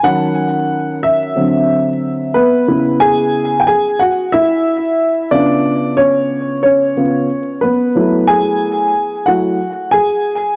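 Nocturnal and cool, this short hip hop excerpt moves at 91 BPM with a 16th-note swing in C# minor, carried entirely by a solo dark baby grand piano that sits up front with a mellow, vintage tone and a touch of tape echo. The piano ranges from C#3 to G#5, shifting at 2.7 seconds into a new section that moves through C#m7, C#7b9 and F#m7 after opening on D#m7 and D9. Light reverb and studio ambience surround the dry, gritty hardware sound, with vinyl crackle adding a dusty patina.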